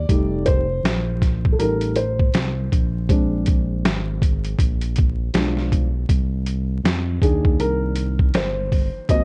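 Dark, vinyl-crackled ambience wraps this smoky, nocturnal jazz-hop excerpt at 80 BPM in C minor, where a mellow, woody upright piano takes a solo over F7, Bb9 and Bdim7 before reaching Cm9 at 6.1 seconds, a smooth sawtooth synth bass glides with portamento beneath it, and a gritty, pitched-down boom bap kit with a thumpy kick, medium-tuned snare and hi-hat enters at 0.1 seconds with a swung 16th-note feel.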